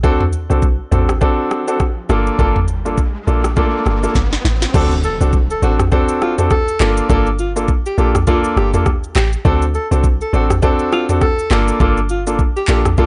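A clear alto saxophone takes the solo melody from 5.0 seconds, its jazz-style line sung with vibrato, a subtone and a soft attack that keeps it present above the groove. Underneath runs a smooth, mellow afrobeats feel with a gentle swing, built on a produced, electronic afro-pop drum kit with a knocking kick, sharp snare, handclaps, rim clicks, shaker, toms and crash cymbal sitting up front. A deep log drum bass supplies round, percussive notes with a fast attack and a dark, decaying tail, while a warm baby grand piano, also up front, comps through a minor-key sway between D7 and Gm9. In the background, an electronic riser builds from 2.0 seconds into a short drum fill, and an impact lands at 4.7 seconds as the second section begins. The whole cut has a dry, gritty hardware character with transformer saturation and a muted top end, and it is taken from a longer piece.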